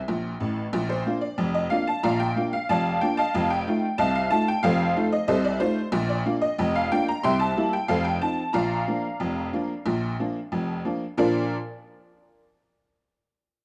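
A jangly tack piano carries this brief ragtime excerpt alone, its metallic, percussive tone sitting boxy and up front in the mix. The mood is lively and jaunty, moving in a straight two-beat metre. It opens with a honky-tonk fill before settling into its main strain at 0.7 seconds, where the harmony moves from Bb through F7 and C7 and back home. The piano spans from deep bass notes up into its upper register, and its part ends at 11.5 seconds as a new section begins just before the cut. A moderate spring reverb and tape saturation lend the production a dark, warm character, and the whole piece is clipped from a longer performance.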